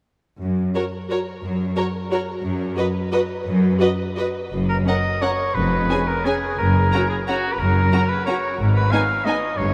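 Bathed in a huge, wet reverb that sets the ensemble in a vast, echoing space, this short passage from a longer classical piece is an elegant, sweeping orchestral ballroom waltz in 3/4, moving with rubato at around 163-197 BPM in F# major. A bright, up-front cello section opens the bass line at 0.4 seconds, and the violins, violas and second violins join at 0.8 seconds. The first violins carry the melody high and focused from a distance, while a close, lush second violin line and a warm viola accompaniment, sliding with portamento, fill the middle with expressive vibrato. At 4.5 seconds the harmony settles onto F# and moves through C#7/E# and back to F# before reaching G#m, as a smooth, even double bass section deepens the low end. Just after, a clear solo oboe steps forward with a second line, its light vibrato carrying a roomy classical tone above the bowed strings.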